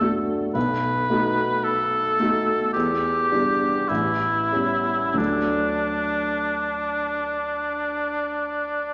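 Rubato and unhurried at 44-56 BPM in 4/4, this serene romantic classical excerpt in D major features a duo of cor anglais and grand piano. The cor anglais carries the melody up front with a punchy tone and light vibrato. The intimate, natural-sounding piano accompanies through a progression from D/F# through B7, Em7 and A9 back to D, its action noise audible, the warm pair set in a wet scoring-stage reverb.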